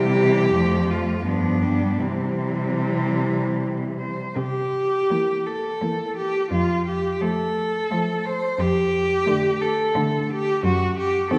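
In a supple, rubato three-four lilt, this lyrical classical fragment for four bowed cellos carries a rich, smooth and even melody up front, over a warm second line sung with soft attacks and portamento, a gliding, vibrato-laden accompanying cello and an expressive bass cello placed forward, all set in the lingering reverb of a church or concert hall.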